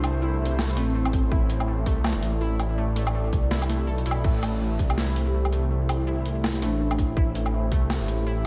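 A dark, murky mix with light digital ambience and a rolled-off top end opens this cinematic, heavy half-time drum and bass excerpt in a swung, laid-back 4/4 over a single minor chord. A rumbling, detuned saw bass sits up front from the start, while a deep, moody pad holds sustained chords underneath with slow attacks, long release, chorus and built-in reverb, pumping from sidechain compression. A gritty, overdriven sampler-style kit, pitched down and re-recorded in a large room, supplies crash, hi-hat, shaker, a high-tuned snare and woodblock. A warbling, nasal lo-fi pluck enters at 0.2 seconds with decaying, chorused and delayed arpeggios. A hard-clipped, tape-warm electronic kick enters at 1.1 seconds and briefly drops out from 3.5 to 4.2 seconds. In the background, a mellow vibraphone played with soft mallets adds metallic, ringing melodic phrases with fast motor vibrato and a diffuse ambient delay.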